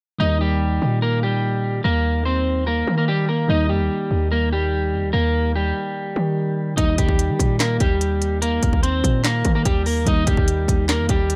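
A dry, close-sounding trap and hip hop excerpt in a half-time feel, pairing a triumphant lift with a wistful edge, where a twangy, slightly broken-up electric guitar carries the melody up front through a low-pass filter. Beneath it, mellow electric-piano-like synth keys with chorus and a filter sweep sit softly in the background, while a heavy, punchy 808-style bass with a noise layer anchors the low end from the start. At 6.8 seconds an electronic trap kit enters up front with a hard-clipped kick, sharp snare, crisp hi-hats and handclaps.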